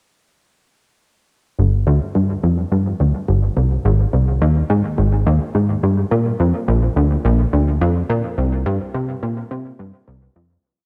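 Ambient piece in C minor at 106 BPM in a straight 4/4, expansive and mysterious in mood. A solo plucky analog bass carries it from 1.6 seconds, sitting up front with a punchy, funky sawtooth and pulse-wave tone, a fast-attack filter pluck and decaying notes, running a repeating 12-step sequence that drifts against the bar, dressed in lush chorus and tape echo. A moderate plate reverb with a long 3.4-second tail surrounds it, and the piece fades out from 7.6 seconds to its close at 10.6 seconds.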